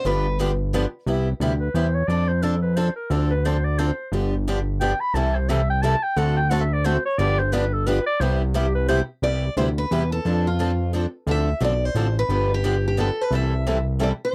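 A dry, close 1970s-style studio sound frames this charming, swinging 3/4 jazz manouche excerpt in C major at 176 BPM, where picked steel-string acoustic guitars with fresh strings and finger squeak carry the melody and accompaniment over a fat, saturated analog bass, a mellow clarinet with vibrato and subtone takes a solo from 1.1 to 9.2 seconds, and the lead guitar returns to the melody at 9.2 seconds over a progression cycling through Cmaj7, F6, Dm7 and G7.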